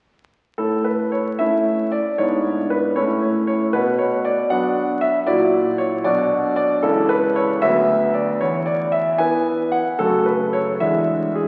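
The crackle of an aged 78 rpm record hangs over this recording, and a wet concert hall reverb with a 2.4-second decay gives it a spacious glow. Within that haze, a solo concert grand piano sits up front, its tone clear and natural, with deep bass and long sustain, ranging from C#2 up to G#5. The music is a classical-period sonatina in A major and 6/8, moving at 76 BPM in dotted quarters with a flexible, rubato feel that makes it sound graceful and playful. The harmony opens on A at 0.6 seconds, turns toward B minor and its F#7 lead-in, then passes through C#m7 and Bm/D before settling on E at 8.4 seconds. A brief F#m and an E7 close this short passage, cut from a longer piece, at 11.5 seconds.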